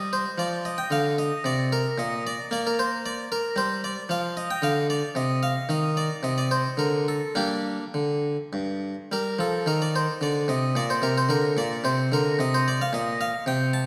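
A lone Flemish-style harpsichord opens the music, its plucked tone bright and close to the listener, played on a single set of strings. This is a grave, flowing baroque-style suite movement in three, shaped with a free rubato that lets the phrases breathe. The harpsichord spans from G2 up to A5, moving from a rich opening Ebmaj13 through Bb and Dm harmonies before a brief chordless passage at 5.7 seconds and a return to G minor. A second section begins at 9.1 seconds on a bare G5, then settles into Bbadd9 and Bbsus2 colours that leave the harmony open as the music is cut from a longer piece at 13.9 seconds. A generous scoring-stage reverb surrounds the instrument, giving each plucked note a long, glowing tail.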